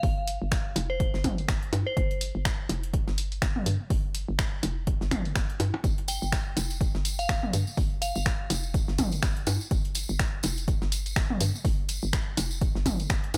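A swung 4/4 groove of up-front, punchy electronic kick, an analog drum machine's finger snaps and hi-hat, and a gritty, compressed breakbeat kit in the background, with its filtered hats pumping and high-tuned snare, drives this quirky, cool minimal techno excerpt over a hollow, bouncy FM bass pumping on Fsus2, with small-room electronic blips and toms joining at 0.8 seconds, a jingly tambourine at 5.8 seconds, and a glassy, crystalline bell melody warbling through chorus, phaser and tape echo in two brief phrases, the second at 6.1 seconds.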